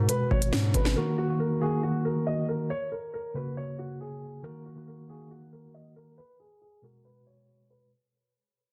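This tense, ominous drill fragment opens with a dark, boxy concert grand carrying the melody over a mellow tine electric piano that sounds clean and comes through built-in speakers, both placed up front and softened by a low-pass filter. A distorted 808-style bass hits at the same moment, heavy, saturated and aggressive with a fast attack and a noise layer, while an electronic drill kit joins at 0.1 seconds with a sharp snare and crisp hats re-recorded in a large room. The pulse sits at 138 BPM in a half-time feel, and both bass and drums drop out at 1.0 seconds, leaving the two keyboards alone. The piano's audible action noise and deep low end give it an intimate, brooding character as the harmony moves through Abm7, Ebm and Gb, then back to Ebm before returning to Abm7. A filter sweep and a fade-out run across the whole passage, set in light reverb with a dense, heavily limited modern master that shows lossy compression artefacts.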